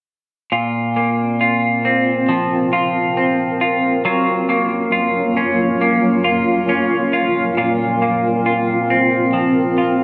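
Dream pop with an ethereal, hazy mood, this slow excerpt opens at 0.5 seconds with a clean electric guitar playing up-front, twangy arpeggios colored by analog chorus and digital delay, moving from Bbsus2 to Gbmaj7 and back. At 1.4 seconds a granular cloud pad enters beneath it, holding blurred, evolving sustained chords with a mellow, wave-folded tone and its own built-in reverb. A wet plate reverb with a long 3.5-second decay gives the whole passage a drifting, spacious sound.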